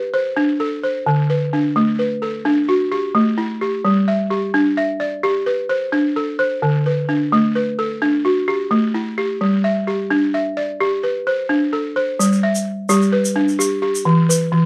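Joyful and flowing, this excerpt of West African traditional xylophone music moves at 86 BPM in 12/8 in G major, with an up-front balafon played with rubber mallets sounding woody, buzzing arpeggios over G and D chords before an E minor turn, while a grainy, vintage egg shaker joins at 12.2 s for the closing section inside a reverberant studio ambience.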